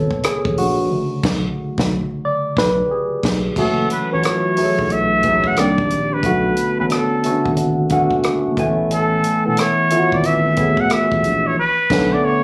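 Sultry and late-night, this neo-soul R&B cut from a longer piece moves at 90 BPM with a swung sixteenth feel in B dorian. A barky, lightly overdriven tine electric piano with phaser opens up front over a thick, saturated sub bass and a compact, dry cocktail kit with dark cymbals and a high-tuned snare, its punchy kick dropping out from 0.9 to 3.6 seconds. At that point a nasal, breathy straight-muted trumpet takes the melody with light vibrato, scooped notes and slapback echo, all set in a light club reverb with the close, roomy sound of a phone recording.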